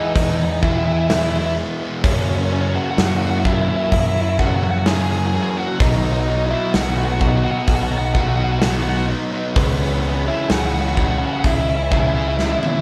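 A dark, fuzzed-out octave lead guitar carries the melody through this cinematic, euphoric post-rock passage at a slow 64 BPM in 4/4, while a thick fuzz guitar and a crunchy, phaser-treated overdriven guitar in the background play riffs, a growling, bright, overdriven fingered bass and a big, up-front rock drum kit with a punchy kick and a rolled-off top enter at 0.2 seconds before a drum fill at 12.4 seconds, and a very quiet, veiled con sordino string section holds sustained chords through Emaj7, F#7, Bmaj7 and C#m7, with the band sounding live together in one large, moderately reverberant studio room.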